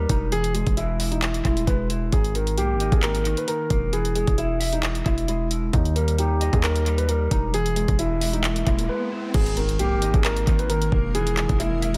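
This dark, hard-hitting trap excerpt sits in a digital, echo-heavy space, with a knocking, tape-warm drum kit and a distorted, aggressive 808-style bass pushed up front. At 133 BPM in a half-time 4/4 feel in G# harmonic minor, the kick, handclaps, bright hi-hats and crash cymbal carry the pulse from 0.1 seconds. A somber baby grand piano plays the melody with long sustain and tape echo, while a clean, fingered electric guitar with subtle chorus supplies a mellow accompaniment alongside it. The chords move between E, G#sus2 and D#. A riser enters in the background at 7.8 seconds, a short break arrives at 8.9 seconds as it builds, and an impact lands at 9.3 seconds as the second section begins. From 10.6 seconds a cloudy, blurred granular pad with slow attack and built-in reverb holds sustained chords behind the mix.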